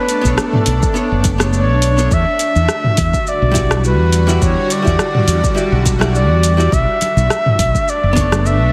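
Heavily compressed, radio-like and set in a moderate scoring-stage reverb, this wistful, relaxed sunset chillout fragment carries a breathy, whispered flugelhorn melody with vibrato and scooped notes over a clean, picked archtop guitar accompaniment, both touched with digital delay, while a shimmering, detuned ambient pad with chorus sustains beneath, a barely audible downlifter sounds until 2.1 s, a tape-warm deep house drum kit and a deep, layered electronic kick keep a lightly swung groove, a dark, round fretless electric bass sits up front, and bright congas join in the background at 7.0 s.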